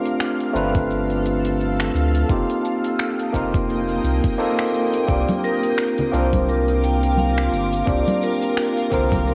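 A barky tine electric piano anchors this short sunset chillout excerpt, lightly overdriven through a combo amp, filtered and fed into tape echo, with a filter sweep running across its full 9.3 seconds as it comps over suspended ninth chords. Beneath it a shimmering ambient pad holds slow-blooming, detuned chords with an ethereal octave-up sparkle, chorus and phaser, while a round sine sub bass sits up front from 0.5 seconds. The rhythm has a gently swung, wistful sway: a deep house kit of finger snaps, metallic hi-hats and shaker carries a cassette-tape haze, and a gritty, thumpy electronic kick adds its own overdriven punch. At 5.1 seconds a vibraphone played with medium mallets enters with a ringing melody and slow motor vibrato, joined moments later by close, dry congas. Moderate spring reverb and the home-cassette recording give the whole a soft, lived-in glow.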